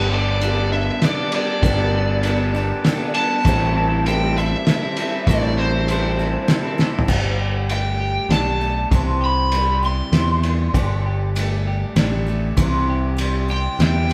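A live-in-one-room band sound fills a large studio with moderate reverb in this nostalgic, open-road slice of folk rock and heartland rock, moving at 99 BPM in a straight 3/4 in G major. A shimmering, octave-doubled twelve-string acoustic guitar is picked beside a twangy, scooped electric guitar riffing at the edge of break-up through spring reverb, while a direct, amped picked bass sits up front and a cloth-damped, thuddy kit with a fat snare and dark cymbals joins it up front from 0.4 seconds. The lead guitar, overdriven through a small cranked amp, carries the melody high in its range, and after a drum fill at 6.8 seconds it takes a solo from 7.1 seconds over chords moving between Gsus2 and C.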